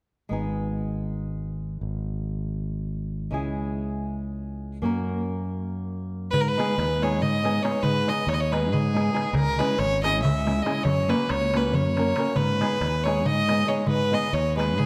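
Set in 7/8 at 278 eighth-note beats per minute with a straight feel, this fiery, virtuosic Balkan wedding-band piece in G# minor is cut from a longer performance. From 0.3 s a fingerpicked flamenco guitar, acoustic and fresh-stringed with audible finger squeak, plays accompaniment. Beneath it, an up-front overdriven fingered electric bass has a bright, growly, amped tone. The harmony moves from G#m to C#m and F# before returning to G#m. At 6.3 s a single bowed fiddle takes the melody, clear and earthy with light vibrato and a smooth top, placed up front, while a clay-shell darbuka with natural skin, played with soft hands, adds a vintage, band-limited pulse in the background. A wet concert-hall reverb with a 2.3-second decay surrounds the band.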